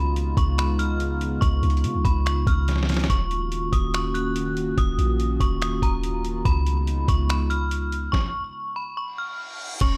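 Atmospheric cloud-rap hip hop in a spacious, ethereal half-time feel, where an inharmonic FM bell rings out the melody with chorus and tape echo over a moody, detuned analog pad with sidechain pumping, a boomy 808-style bass and a gritty, pitched-down sampler drum kit with finger snaps that sits up front in a fairly dry mix, fills briefly around 2.7 seconds and drops out in a stop from 8.1 seconds as an electronic reverse cymbal rises and soft, muted felt-like synth keys slip in at 9.8 seconds.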